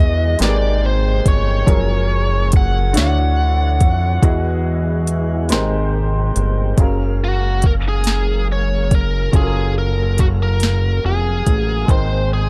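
Sensual and tender, this slow six-eight R&B excerpt sets a biting, overdriven lead guitar melody over worn, open baby grand piano, a smooth tonewheel organ with slow rotary speaker in the background, a fat, detuned sawtooth analog bass with an evolving filter sweep, and an up-front electronic drum kit with soft kick, sharp snare and crisp hats, its kick dropping out from 5.5 to 6.8 seconds before the guitar takes a solo over lush major-ninth chords in a dark, warm production.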